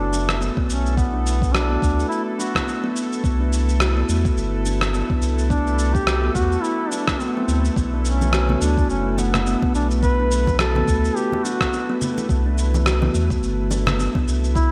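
A gently swung 4/4 groove at 106 BPM sets the pace for this earthy organic downtempo excerpt in B phrygian, with a gritty, tape-toned electronic shaker and rim click entering at 0.1 seconds and a thumpy, compressed electronic kick at 0.6 seconds, while soft-handed, ringing congas sit in the background from 8.2 to 14.2 seconds. Over a deep, round sub bass with tube saturation and sidechain pumping, a mellow duduk sings a folk-style solo line with scooped notes and delay, a woody kalimba with a hollow-box character plucks delayed arpeggios, and a tense, string-like drone with vibrato holds sustained chords moving between Bm7 and Cmaj9. The bright 1980s-style digital production places everything in a lush hall reverb, giving the warm mood a spacious, unhurried glow.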